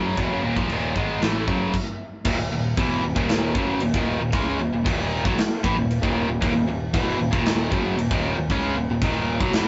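A double-tracked, overdriven electric guitar drives this aggressive heavy metal piece at 116 BPM in Eb minor, playing its riff up front while a growling picked bass with its own overdrive sits in the background. A big, punchy acoustic drum kit joins at 0.2 s with china and crash cymbals, kick and snare. The band halts for a stop from 1.7 to 2.3 s before the next section, all in a moderate small-room reverb and a rough rehearsal-room sound that trims the top end.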